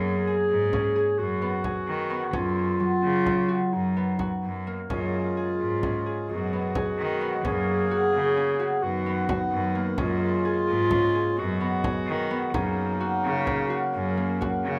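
Set in a lopsided 11/8 with a straight feel, this playful, shimmering contemporary chamber piece pairs ringing fingerpicked harp arpeggios with a dark, roomy solo clarinet on the second line and a biting bowed cello bass with light vibrato, while a deep, close and dry frame drum under hard hands joins at 0.7 s and a reedy, breathing hand-pumped harmonium adds sustained chords from 4.9 s over a pedal-anchored progression, all in a moderate studio reverb.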